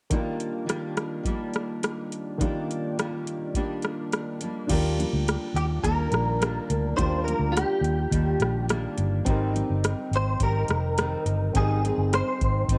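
Light reverb gives this dreamy, nostalgic excerpt of indie and bedroom pop a close, hushed atmosphere. It is tuned slightly under concert pitch to A4 = 437 Hz and sits in Eb major at 105 BPM in a straight 4/4. From the start, a dark, woody upright piano with audible action noise and a slightly detuned, intimate character shares the accompaniment with a full-bodied fingerpicked steel-string dreadnought, which is treated with subtle chorus and vibrato. A soft vintage rhythm box sits up front, its dry analog kit of deep kick, metallic hi-hat, rim click and crash cymbal roughened by overdrive. At 4.7 seconds a round, foam-muted electric bass with an amped, dusky tone arrives up front, and at 5.6 seconds a clean, compressed, direct-recorded electric guitar takes the picked melody, coloured by ensemble chorus and slapback echo. The harmony rests on Ebmaj7 before shifting to Abmaj7 at 9.3 seconds.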